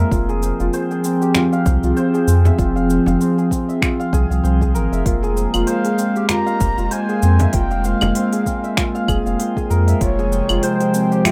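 A loping 97 BPM swung 4/4 groove from an overdriven, layered electronic kick and a small kit of claves, finger snaps, smooth hats and shaker, joined at 1.4 seconds by a deep, dry frame drum in the background, carries this earthy, meditative organic downtempo excerpt in F minor, where a round sine sub bass sits up front under a warbling, nostalgic lo-fi pad holding an Fmadd9 chord with sidechain pumping, a shimmering hammered santur ripples arpeggios through delay and plate reverb, a metallic bronze singing bowl rings very quietly from 5.1 seconds, and a breathy flute-like synth lead with vibrato takes the melody from 5.7 seconds, all in a rough home demo mix.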